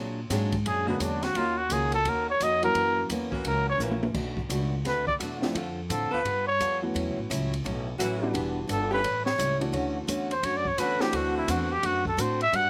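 The sound is dry and close, with little reverb and an open-air feel that leaves each part clearly defined. This is a short, sultry cut of big band swing at 172 BPM in 4/4, swung on the eighths, with a mellow trumpet up front carrying a solo from 0.7 seconds, its soft attack and light vibrato giving a vintage jazz tone. Beneath it a woody, growly upright bass is plucked throughout, while an open jazz drum kit with dark cymbals, a high-tuned snare and a boomy kick drives the pulse and drops in a brief fill at 3.8 seconds. A picked steel-string acoustic guitar and an intimate concert grand piano, whose action noise is audible, both carry a slapback echo, with the piano comping in two stretches, dropping out after 3.1 seconds and returning at 5.4. A bright saxophone section with vibrato holds sustained chords behind the trumpet as the harmony moves from Bb7alt through Ebm7 and Gb7 into a second pass that lands on Dmaj7 and D7.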